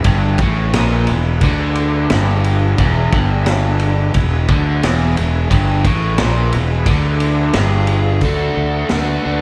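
A gritty, raunchy blues rock and southern rock power-trio groove at 88 BPM in E mixolydian opens with a growly, fuzzed fingered bass up front, a punchy vintage drum kit with dark cymbals, and a very quiet, thick tonewheel organ holding sustained chords through a slow rotary speaker, joined almost at once by a bright, double-tracked overdriven guitar riff. At 7.5 seconds a compressed fuzz lead guitar enters with a short melody, and at 8.2 seconds the harmony moves from E to D, with the drums stopping at 9.1 seconds. The sound is a fairly dry live club mix heard through the venue's PA, cut from a longer piece.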